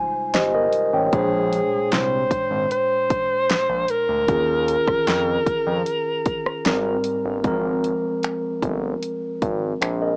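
A breathy alto saxophone carries the melody with a warm subtone and vibrato, played in a jazz style between Ab4 and C5 from 1.1 to 7.1 seconds, sitting up front with a cassette-tape tint. This short contemporary R&B excerpt moves at a relaxed 76 BPM in 4/4 with a straight feel in Ab major, and the mood is tender and dreamy. A clean tine electric piano opens with a brief fill before settling into lush extended chords, from Abmaj13/G through Bb9 and Eb9sus4 to Abmaj9, then resting on Ab69. Beneath it, a smooth synth bass blending sawtooth and square waves holds sustained low notes with a moving notch filter, while a layered electronic pop kit adds a punchy kick, fat snare, bright hi-hat, rim clicks and finger snaps, also colored by cassette tape. The whole piece has the intimate, boxy character of a home cassette recording in a small booth, heard through a small speaker.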